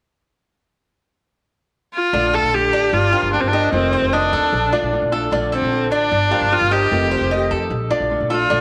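Relaxed and warm, this Latin fragment moves at 151 BPM in Bb major, where a bright, focused bowed viola with vibrato enters at 1.9 s and carries the melody up front. From 2.1 s, a fingerpicked flamenco guitar with fresh strings, a metallic, picked Cuban tres playing arpeggios through a slapback echo, and a woody, growly pizzicato upright bass join over a Bbmaj7, Gm7 and F9 progression. A moderate spring reverb lends the small group a roomy sheen.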